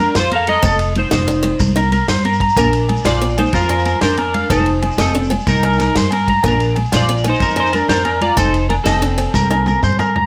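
Captured in a moderate studio room, this short cut from a longer joyful, carefree highlife guitar band piece in Bb major rolls along at 124 BPM in 12/8, with a twangy clean electric guitar carrying the melody through analog chorus up front while a slightly broken-up electric guitar picks arpeggios with vibrato and slapback echo, a woody, growly pizzicato upright bass anchors the low end, a boxy picked acoustic archtop guitar adds accompaniment with audible finger squeak, a dry, mid-forward soul drum kit with a tight kick and rolled-off top keeps time before a fill at 9.3 s, and bright, high-tuned congas, a grainy, distant shekere and ringing agogo bells entering at 2.6 s sit in the background over a cycle of Bbadd9, F7 and Cm7.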